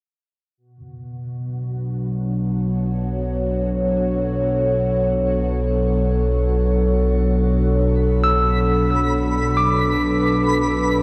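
Reflective and spacious, this ambient passage in B minor drifts in free time, cut from a longer piece and resting on a single Bm7 chord. A warbly, tape-like pad carries the sustained chords from 1.0 seconds, up front and nostalgic, its detuned square and triangle tones softened by chorus and shimmer reverb. Just after it, a string-like drone with a tense, detuned edge and gentle vibrato sits quietly in the background, and from 2.4 seconds a deep, ominous bass drone adds a rumbling, wave-folded low end. Near the close, a tine electric piano, clean and played through a combo amp, scatters high arpeggios through diffuse ambient delay, joined by a twinkling granular texture that sparkles with an octave-up shimmer. The whole sound sits in a huge, wet reverb and carries the worn warble and pitch drift of old cassette tape, while the synth drone fades out across the passage.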